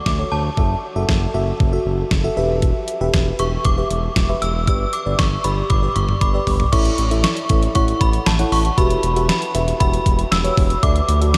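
A detuned 8-bit drum machine sits up front with a thumpy kick, a medium-tuned snare and tape-tinged hits across hi-hat, crash and toms, driving this nocturnal synth-pop excerpt at 117 BPM in E dorian and rolling into a fill from 5.7 to 6.7 seconds. Beneath it, a smooth sawtooth-and-square synth bass glides with portamento, while an FM electric piano with a soft pad layer adds lush, detuned chords through chorus and phaser, moving from D and F#m7 toward Em, G, A, Emadd9 and Dadd9. High above, a vintage FM chime rings with an inharmonic, warbling shimmer through ensemble chorus and diffuse delay, and a huge 8.1-second ambient reverb leaves the whole mix dreamy and soaked.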